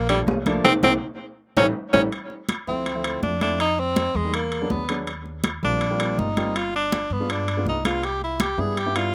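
Driving and fiery, this Afro-Cuban jazz passage in D minor moves at a straight 163 BPM in 4/4, cut from a longer piece and heard dry in open air. A clear, up-front tenor saxophone carries the melody with light vibrato and scooped notes, soloing at the start while the band hits an accent and a drum fill arrives at 1.0 seconds, over woody, thumpy pizzicato upright bass. A natural baby grand piano with slapback echo comps through rich chords such as Gm9, A7, Fm11 and G7b9, while high-tuned, thick-skinned congas and ringing metal-shell timbales drive the percussion.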